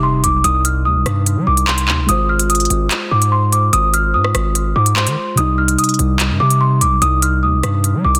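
A half-time drill groove at 146 BPM drives this cold, tense C minor hip hop excerpt, where crisp hi-hats, handclaps and rim clicks from the up-front electronic kit enter at 0.2 seconds beneath a punchy, heavy 808-style bass, while a worn, slightly out-of-tune celesta carries a delicate, bell-like melody through tape echo over dark, muted felt-like synth keys with chorus, all moving between Cm and Ab6 in a dense, heavily limited mix with light digital ambience.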